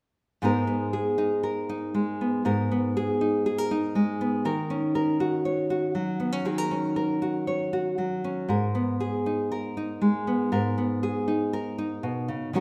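This is a folk piece for solo fingerstyle acoustic guitar, wistful and haunting in mood, moving at 119 BPM in a straight 4/4 in G# minor, with the tuning set to A4 = 439 Hz. A single nylon-string guitar carries everything from 0.4 to 12.6 seconds, fingerpicked in a classical manner and spanning G#2 to C#5. Its tone is bright and up front, and small finger squeaks on the strings add an intimate, human detail. The harmony moves from G#madd9 to D#m7 at 4.5 seconds and back to G#madd9 at 8.5 seconds, giving the passage a suspended, searching quality. A moderate scoring-stage reverb lends the guitar a sense of space, and the clip is cut from a longer piece.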